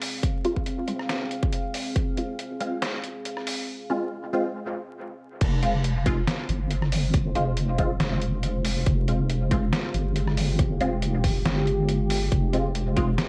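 A deep, wobbling bass enters up front at the 5.4-second drop of this cavernous, brooding deep dubstep excerpt in F minor at 139 BPM with a half-time, lightly swung feel, joining a punchy overdriven kick that drops out after 2.1 seconds and returns with it, a muffled, pitched-down trip hop sampler kit of snare, rim click, hi-hat and crash, nasal filtered dub chord stabs with phaser and dub echo that sweep through the build-up, and a moody, dark ambient pad of sustained chords, all under light reverb and vinyl crackle.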